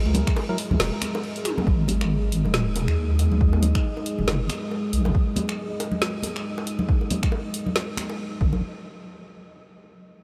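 Heavy and meditative, this deep dubstep excerpt rides a swung half-time groove built on a punchy, up-front electronic kick and a layered deep house kit of woody snare, dark hats, finger snaps, toms and crash, with bright, hard-handed bongos and congas trailing dub echo. A wobbling sine-and-triangle bass with chorus sits beneath a moody, detuned sawtooth pad, a hollow organ stab flickers in the background at 0.5 seconds, and an airy, breathy wind-like noise texture drifts in at 2.2 seconds. Huge ambient reverb soaks the dreamy mix, and the bass drops out at 5.1 seconds before a brief return.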